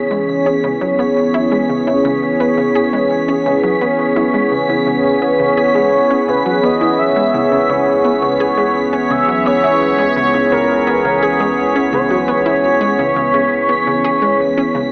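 A bright, detuned sawtooth pad with a resonant filter swell sits up front over a C#m7 chord in this cosmic, hypnotic slice of ambient, sequencer-driven space music at 85 BPM in C# minor, alongside a chorused analog pluck riff with 12-bit sampler grit and tape echo, a bubbling stepped-filter texture high above, and a deep, wave-folded analog bass fading in underneath, until a shimmering, nasal pulse-width lead with vibrato and portamento enters at 5.2 seconds, all soaked in a lush 2.6-second hall reverb with a dreamy cassette and AM-radio haze.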